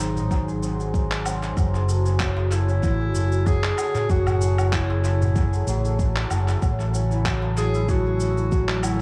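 Hypnotic and mystical, this short organic downtempo excerpt sets a clear, classical-style clarinet melody with dub echo over shimmering, ringing santur arpeggios roughened by vintage 12-bit sampler grit, an airy, breathy pad pumping softly in the background, an up-front fretless electric bass with tube saturation, a crisp, deep darbuka entering at 0.2 seconds, a deep layered electronic kick from 0.3 seconds, and gritty sampler-style shaker, handclaps and woodblock washed in tape echo, all moving through G#7, F#m9 and A6 in a swung, echo-heavy mix.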